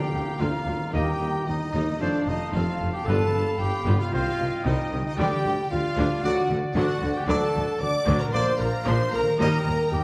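Cinematic and adventurous at 113 BPM, this full-orchestra excerpt sets a rich, focused studio violin section on the melody over hushed symphonic violins, a warm oboe, a bright clarinet and an airy, hollow flute as second lines, mellow French horns and very quiet trombones holding chords, clear distant trumpet stabs, a ringing harp arpeggiating, round timpani until 3.8 s, a lush viola section, and a bass of cellos, double basses and a roomy tuba, all moving from Bb/D through G7 and Cm to a Dsus4 that resolves to D in a reverberant scoring-stage space.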